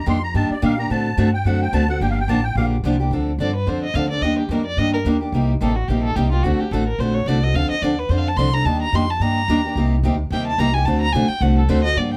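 A reedy musette accordion opens this swinging, virtuosic slice of acoustic string jazz manouche, its shimmering wet tuning heard close and dry over a thumpy, woody upright bass and a bright picked archtop guitar. The accordion's brief solo ends at 2.7 seconds. The bowed violin takes over as the melody voice at 3.4 seconds and carries the rest of the passage. Played by a single player, the violin sounds warm and expressive, with vibrato, portamento and a smooth top. Underneath, the pizzicato bass with steel strings and the guitar with fresh strings and audible finger squeak sit up front and drive the swung accompaniment through minor-leaning changes. Light reverb and close, detailed miking give the recording an intimate, present sound, and the passage is cut from a longer piece.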